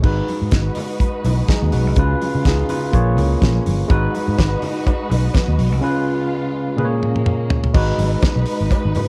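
A dark, lightly reverberant production frames this short disco cut at 125 BPM in G# dorian, with a danceable, glamorous mood and a gentle swing on the sixteenths as G#m7, C#7 and A#m7 cycle through. Up front, a gritty, barky overdriven tine electric piano with subtle chorus carries the accompaniment over a punchy fingered electric bass and a dry, damped 70s drum kit with a fat snare, tight kick, hi-hat, crash and toms, while a lush bowed string section holds smooth, vibrato-rich chords underneath. Very quiet low-tuned congas join at 0.3 seconds and a metallic cowbell at 3.9 seconds, and a drum fill at 6.8 seconds leads into a new section at 7.7 seconds.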